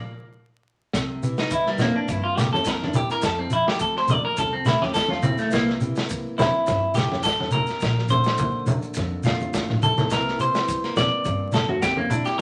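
A straight 4/4 groove at 105 BPM drives this carefree highlife guitar band piece in C mixolydian, cut from a longer performance and opening with a short band accent before the groove settles in at 0.9 seconds. The crunchy breakbeat drum kit sits mid-forward with a tight kick and a medium-tuned snare, its saturated, gritty sound rolled off at the top, and it plays a brief fill at 9.4 seconds. Around it, a grainy, compressed shekere and low-tuned, ringing congas with a vintage, band-limited character fill out the percussion. In the background, a boxy, thumb-plucked nylon-string guitar supplies accompaniment while a dark double bass is bowed sul tasto with a soft attack, airy tone and light vibrato. Up front, a bright, twangy clean electric guitar takes a picked, arpeggiated solo through the changes from C7 to Fmaj7, back to C7, then Bb and home to C7. A wet studio reverb and a layer of vinyl crackle give the whole a warm, worn sheen.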